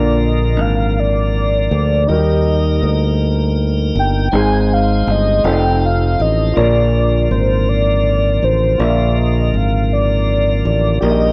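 From the first moment, a velvety, warbling synth lead with chorus carries the melody over a deep-toned concert grand piano, a piping tonewheel organ through a slow rotary speaker and a growly, up-front fingered electric bass, as this hopeful, jubilant gospel fragment in 6/8 moves from Bb through Eb, Ab and F7 back to Bb in a dry, close 1970s-style studio sound.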